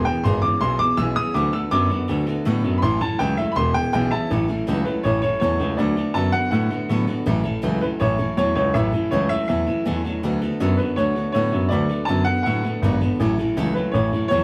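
Rockabilly at 162 BPM in A major, rowdy and upbeat, with the band playing live in one room amid moderate studio ambience. A clear, woody upright piano carries the melody up front and takes a solo in the opening 4.3 seconds, while a dark, mellow grand piano holds down the bass and a bright, full-bodied jumbo acoustic guitar picks out the accompaniment. A twangy, slightly broken-up electric guitar through a small old amp drives the low riff as the chords move among E6, D6 and A6 in this cut from a longer piece.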